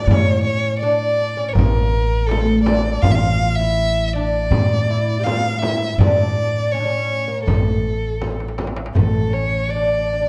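Arabic maqam ensemble excerpt with a soulful, longing mood, led by an up-front bowed violin singing with vibrato and portamento over a woody, plectrum-plucked fretless oud and a thumpy pizzicato upright bass on gut strings, while a crisp, very quiet metal-shell darbuka and a distant frame drum add percussion and a drum fill from 8.2 to 8.9 seconds leads into a new section, the ensemble sitting in a moderate recital-hall reverb with a dark, warm production.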